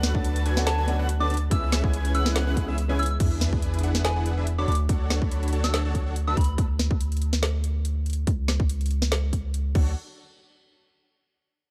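Playful and bright, this future bass excerpt cut from a longer piece rides a half-time, lightly swung groove as a hard-clipped kick and a deep, mellow 808-style bass with sidechain pumping sit up front, joined by a trap kit with woody snare, metallic hats and crash cymbal. A huge, detuned supersaw riff with delay and a round, FM-style struck synth melody carry the top, while a clear baby grand piano and an airy, dreamy arpeggiated lead sit in the background until about 3 seconds. The kick drops out just before an impact and sub drop at 3.2 seconds, after which a filter sweeps over the 808 bass in a dark production with little reverb.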